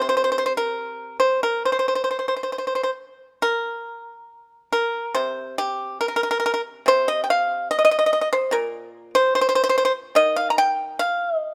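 The rhythm is rubato, loosely in 4/4 with a pulse that drifts between 66 and 74 BPM, giving this short piece of Chinese traditional solo plucked-string music an unhurried, breathing feel. A lone pipa carries everything, played with fingerpicks and heard up front, its dry, percussive attack set against a warm acoustic body. Centred on the C yu mode, the line moves across a span from Bb2 up to Bb5, and the mood is longing and contemplative. A new passage begins at 3.4 seconds and runs on until the cut at 11.5 seconds, since this is a fragment of a longer work. Close, detailed microphones catch the fine grain of each plucked note, while a light reverb lends the space a faint glow.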